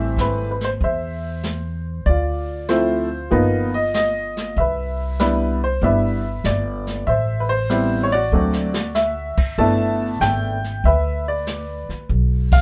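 A swung 4/4 pulse at 96 BPM sets a cool, moody jazz piano trio excerpt, where a clear, slightly detuned upright piano carries the melody over pizzicato upright bass on gut strings, woody and thumpy, moving through Am7, Dm7, G7alt and Cmaj9 before turning to D9 and G6. A brushed drum kit with dark cymbals and a boomy kick enters at 0.2 seconds, plays a fill from 8.3 to 9.0 seconds, and the band hits an accent at 12.4 seconds. All three instruments sit up front in a small room with moderate reverb.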